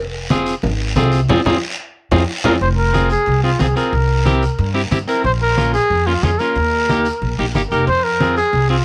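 Latin cumbia in F minor at 182 BPM, fiery and driving, opens on woody pizzicato upright bass, joined at 0.3 seconds by a clean, picked electric guitar, low-tuned, damped congas and a raspy guiro. Ringing cowbell and timbales enter at 0.6 seconds and stop at 2.5 seconds, during a drum fill and band accent that begin at 1.3 seconds. From 2.4 seconds a breathy, whispered trumpet with light vibrato and tape echo carries the melody up front over Fm, C7, Bbm and Eb before returning to Fm. The close, detailed sound has light reverb, and the clip is cut from a longer piece.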